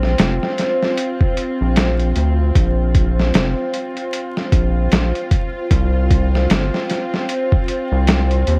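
A gritty, sampler-style drum kit sits up front in this smoky, cinematic trip hop excerpt, its thumpy kick, medium-tuned snare and hi-hat overdriven and compressed, with the feel of a small room. The tempo is a slow 76 BPM in 4/4, with the sixteenths swung at 59%. Beneath it, a round, deep analog bass with a fast, plucky attack and tube saturation moves between F1 and Eb2. A distant, reedy string section holds dark sustained chords around C4, its gut-string tone carrying light vibrato and a vintage 12-bit sampler grit, resting on Fsus4 until the harmony drops out at 5.7 seconds. Far back in the mix, a tense, string-like drone on F4 breathes in slowly and trails off in its own reverb. The whole recording is wrapped in worn, warbling cassette tape with vinyl crackle, drifting pitch and light reverb across the 8.6-second clip.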